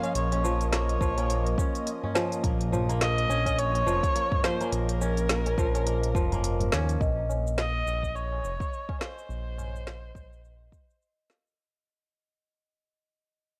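A bowed kamancheh carries the melody up front with vibrato and gliding portamento, its smooth tone trailed by tape echo, over crisp, ringing fingerpicked kora arpeggios in this meditative, earthy organic downtempo excerpt with a gentle swing. A dark, gliding sawtooth synth bass pumps beneath an ethereal, airy pad that sits in the background until it drops out at 7.0 seconds, while a deep electronic kick, a deep house kit of woody snare, smooth hats and shaker, low-tuned tabla and a metallic bronze singing bowl with slow beating fill out the groove. The kick drops out at 6.4 seconds before the piece fades from 7.0 seconds, all set in a dry, gritty sound with transformer saturation, a cassette tape character and light reverb.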